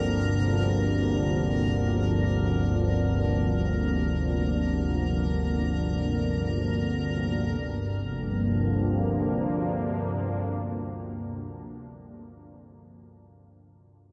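A detuned, sawtooth-edged resonant pad sweeps up front through sustained chords built on Bbadd9/G, its filter swell giving this excerpt from a longer dark ambient drone a slowly evolving, vast and ominous shape in free time. Beneath it, a calm, nasal organ-like drone holds low with ensemble chorus until 11.2 seconds, while an icy, crystalline glass pad with a ring-modulated, airy shimmer hovers high and drops out at 7.6 seconds. Everything sits in a cathedral-scale reverb that makes the space feel enormous and echoing.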